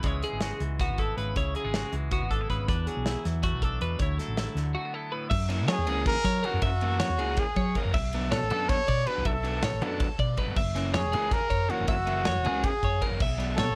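Math rock meets midwest emo in this bright, playful passage, cut from a longer piece and set in a skittering 7/8 with a straight feel. A chiming twelve-string electric guitar spins arpeggios throughout, while a twangy, compressed clean guitar adds accompaniment until 6.6 seconds. Beneath them sits a dark, round hollow-body bass, alongside a polished studio kit with a punchy kick, medium-tuned snare and sparkling cymbals, placed up front in an airy small room. Around 5.5 seconds, a double-tracked, crunchy overdriven guitar enters with a riff, and moments later a clear pop-style trumpet takes the solo melody with vibrato, giving the second half a lift. The whole recording carries light reverb and the worn, warbly pitch drift of old cassette tape.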